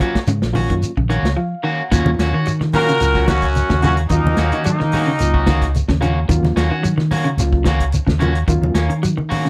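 Up front, a bright, punchy horn section carries the melody from 2.7 to 5.7 seconds, shadowed by a clear trumpet and a very quiet, raspy baritone saxophone, over a driving, intense afrobeat groove in Eb minor at 110 BPM built on a round, dark fingered bass, a tight soul drum kit, damped congas, a grainy shekere, twangy guitar stabs with slapback echo, picked clean guitar arpeggios and a gritty, overdriven reed electric piano with tremolo that adds a fill before 1.9 seconds, as the groove drops into a short break from 1.4 to 1.9 seconds, all in a dry mix.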